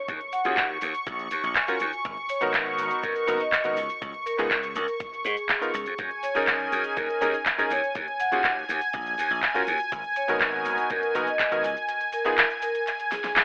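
A lush, detuned unison pad sits up front, holding thick sawtooth chords with a chorus shimmer and a pumping sidechain that breathes with the beat in this feel-good, groovy nu-disco clip. Beneath it, a bright, growly slap bass drives the low end until about 11.7 seconds, while an up-front pop drum kit supplies a fat snare, crisp hats and handclaps, backed by a thumpy, sampler-style electronic kick and quiet maracas in the background. A ringing vibraphone played with medium mallets carries the melody through a tape echo, and a clangy, vintage electric grand piano adds cutting accompaniment that also pumps with the sidechain. The chords move through minor sevenths and open fifths before dropping away at 11.6 seconds, and a short drum fill at 13.1 seconds closes the passage. The mix is dry and gritty, with a telephone-like character that gives the lush parts a lo-fi edge.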